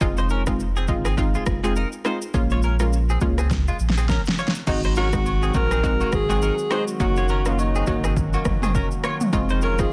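A mellow, hypnotic afrobeats groove at 103 BPM opens with a punchy, overdriven deep house drum kit, a round sine sub bass and a detuned, warbling analog pluck over Fm7 and Bbm7, joined almost at once by a bright, twangy clean electric guitar riff with lush chorus and delay, and after a drum fill from 3.5 seconds, a breathy, intimate alto saxophone melody with delay enters at 4.7 seconds alongside a smooth, tremolo-tinged analog pad and distant agogo bells in the background, all in a light reverb with a faint mains hum.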